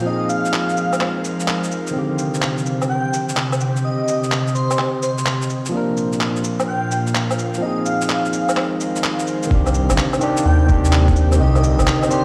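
Rainy and nocturnal, this future garage piece moves at 127 BPM in C minor with a swung 16th feel: a barky, overdriven tine electric piano with tape echo and a breathy, chorused pad both pump with the sidechain beneath a dreamy lead with vibrato and a cassette-tape tint, while muffled, pitched-down electronic cabasa, shaker, handclaps and woodblock sit in a large studio reverb, until at 9.5 seconds an up-front, menacing detuned saw bass with a filter swell and a thumpy, overdriven kick drum arrive.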